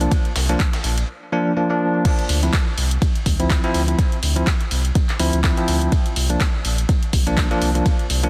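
A dense, heavily limited mix with light digital reverb and a layer of vinyl crackle frames this moody, deep house excerpt, which is cut from a longer piece and moves through C9sus4 and Dm9 chords with a swung sixteenth-note feel. A bell-like tine electric piano plays clean, bright stabs with delay up front, while a round analog bass sits beside it, dark and sustained, both pumping against the deep electronic kick. Layered house drums supply crash, handclaps and hi-hat, and a gritty, overdriven sampler-style kit adds ride and a medium-tuned snare in the background.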